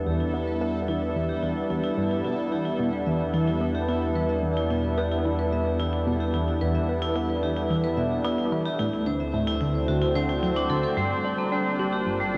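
Ambient, sequencer-driven space music in E minor at 110 BPM, this excerpt feels mysterious and expansive, cut from a longer piece. A bright, airy pad of detuned sawtooth with a noise layer holds sustained chords up front, its soft attack and filter swell giving an evolving sweep, while a round, deep analog bass of triangle and sine anchors the bottom. A tight, driving sequenced synth riff blends sawtooth, square and sine tones with wave-folding and a filter pluck, colored by chorus, phaser and delay. A metallic vibraphone struck with hard mallets plays ringing arpeggios with fast motor vibrato, band-limited through a low-pass filter and delay, fading in alongside a bubbling, resonant texture of random filter steps that sits in the background until 11.0 s. The harmony moves from Em7 to D7 at 8.8 s and shifts to Gm7 at 11.0 s, all washed in a huge, wet reverb and the worn, warbling pitch drift of old cassette tape.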